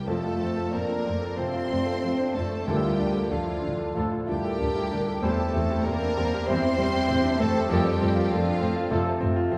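Moving at a flexible, rubato pulse with uneven beats in common time, this passionate, brooding passage from a romantic movement for piano and orchestra unfolds over a chord progression of F, Dm, C/E and back to F. A clear, polished concert grand piano carries the melody up front, reaching down to deep bass notes with short sustain, while a rich, bowed violin section sings a higher, distant melody with smooth vibrato. Second lines come from a mellow clarinet, a hollow flute section with crisp attacks and rolled-off highs, and a second, more focused violin section. Beneath them, dark French horns and bright, tight trombones hold sustained chords very quietly, mellow trumpets add soft stabs, and a mellow bassoon and a lush, very quiet viola section with portamento fill out the accompaniment. Expressive cellos and soft-attacked double basses anchor the low end, and round timpani on soft mallets sound briefly from 2.7 to 3.6 seconds. 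Everything sits in a wet scoring-stage reverb, heard from further back in the room.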